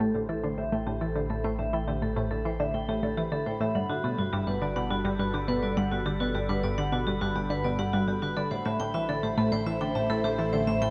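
Awash in wet spring reverb and heavy echo, this mysterious, expansive fragment of ambient, sequencer-driven space music sets a bright, detuned analog pluck riff up front beside metallic, ringing vibraphone arpeggios under a filter sweep, while a swirling phased analog pad fades in on sustained chords over an evolving pulse-width-modulated analog drone bass, drifting from Am7 to Gmaj7 and back.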